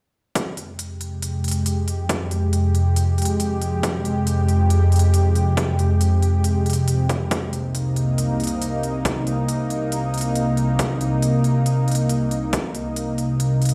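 A big, roomy sound fills this short cut from a longer heavy wobble dubstep piece, with a lush hall reverb giving everything played back in a bare space a menacing, aggressive air in a half-time feel. A thick, detuned sawtooth pad sits up front with chorus and sidechain pumping, sustaining slow-attack chords that move from Fmadd9 to Cm7 at 7.3 seconds. A punchy, overdriven kick drives from 0.4 seconds until 12.6 seconds, while crisp, gritty hi-hats ride alongside it through the end.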